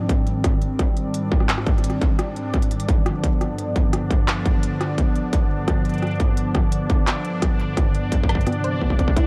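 Playful yet wistful, this short IDM fragment moves at 86 BPM in a straight 4/4, cut from a longer piece and bathed in a digital ambience with the warbling pitch drift of worn cassette tape. A hollow, flute-like pad sits up front with soft sustained chords, its detuned chorus giving a dark glow as the harmony moves from Ab to G7. Above it, a bubbling texture of resonant, randomly stepped filter tones adds a restless shimmer, colored by chorus and built-in reverb and pumping against the beat. A distorted, overdriven electronic kick drives the groove from the front, joined by an industrial kit of crisp hats, handclaps and rim clicks with overdrive and delay, both re-recorded in a small room. At 8.5 seconds a soft, round pluck enters with brief arpeggios, touched by chorus and delay, just as the chords settle on Cmaj7/G.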